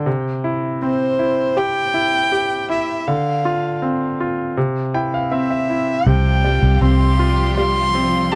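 A dry, close 1970s-style studio sound frames this tender, emotional pop ballad excerpt, which opens on a brilliant, present concert grand piano, soon joined at 0.8 seconds by a woody, dark solo violin carrying the melody with vibrato and a touch of tape echo. As a piano fill draws to a close, a lush bowed string section enters at 6.0 seconds with sustained chords, and at 6.1 seconds a round, foam-muted fingered electric bass arrives up front as the harmony moves from C and Dm7 to a suspended Csus4.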